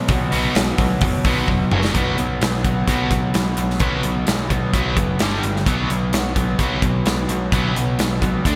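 A straight 4/4 pulse at 129 BPM drives this heavy, aggressive hard rock cut in B minor, led by a big acoustic rock kit up front with a punchy kick, medium-tuned snare, hi-hat and toms, and a drum fill at 1.5 s that leads into the second section at 1.9 s. Three overdriven guitars stack the riff over B5, F#5 and G5 power chords: a biting one and a sludgy, distorted one sit back in the mix, while a bright, double-tracked garage guitar carries spring reverb and slapback echo. A picked electric bass with a direct, amped tone anchors the low end, and a lush hall reverb gives the recording a big arena sound.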